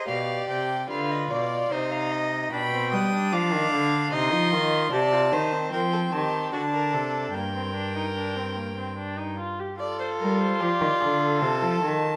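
Two violins and a viola open together at 0.0 s, with a nasal, reedy cello joining on the bass line at 0.1 s, in this driving yet contemplative baroque-style fugue for string quartet at 74 BPM in 3/4: the first violin carries a rich, lightly vibrato melody, the second violin a gut-string counter-line, and the viola a smooth-topped accompaniment, all played in period style and bowed in a stone room reverb as the music settles into G minor from 4.9 s in a passage cut from a longer piece.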